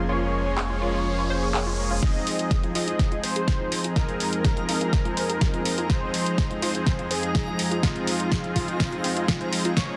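A dense, heavily limited modern mix with light digital reverb carries this driving, dreamy progressive house excerpt. An airy supersaw pad, a wave-folded unison pluck playing background arpeggios and a smooth, detuned soft supersaw playing stabs all pump against the sidechain, while dub echo trails the pluck, the stabs and a thick, nasal unison lead whose warbling, cassette-tinged melody sings with vibrato. A round analog bass with tube saturation and an electronic riser drive the opening filter sweep until 2.0 seconds, when an overdriven, deep kick takes over beside the house kit of handclaps, a punchy snare and bright pumping hats that has been playing since 0.6 seconds, together carrying a build-up and drum fill, and a very quiet reversed, granular texture swells in at 3.7 seconds.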